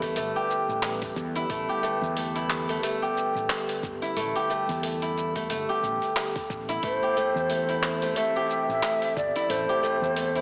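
A silvery, fingerpicked steel-string zither rings up front with filtered, delayed arpeggios in this earthy, organic downtempo excerpt. Behind it sit a detuned, nostalgic tape-like pad with a sidechain pump, a round, dark fretless electric bass, and a gritty, swung sampler-style kit of handclaps, hi-hat and shaker over a thumpy background electronic kick that drops out at 9.3 seconds. A breathy, vibrato-laced ney with tape echo enters at 6.8 seconds as the harmony moves from G to Am7, all heard through a soaking echo-chamber reverb and a heavily compressed, small-speaker radio sound.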